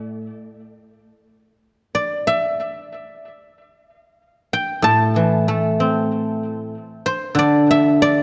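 A solo guzheng, played with fingerpicks, carries this brief fragment of Chinese traditional music from start to finish at 8.2 seconds, its silvery, ringing tone sitting up front in the mix. The mood is flowing and elegant, and the rubato feel lets the phrasing breathe freely over a 4/4 frame. The instrument ranges from A2 up to A5, and a tape echo on the zither adds trailing repeats to its plucked notes. A moderate concert hall reverb gives the sound a sense of space. The whole recording has a worn cassette character, with a warbling pitch drift running through it.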